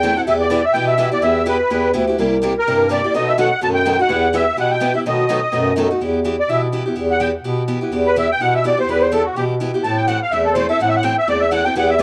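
A fiery, virtuosic stretch of acoustic string swing in the gypsy-jazz manner opens with everything sounding at once: a reedy musette accordion carries the melody up front, over two picked steel-string acoustic guitars and a mellow bass clarinet holding down the low end. The accordion's musette tuning gives it a shimmering yet dark, smooth voice, colored by cassette tape and plate reverb. The two guitars, a parlour and a concert instrument, share the accompaniment with bright fresh strings, a boxy body and audible finger squeak, both touched by plate reverb. The concert guitar drops out at 5.9 seconds and returns only at 11.8 seconds, so when the accordion takes its solo from 6.0 seconds, it rides over a single guitar and the bass clarinet, whose soft attack, light vibrato and scooped notes sound distant and roomy. The harmony moves through Em, C7 and B7 before settling on Em and turning to Am near the end of this cut from a longer piece. 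The whole take has the moderate booth ambience of a home cassette recording.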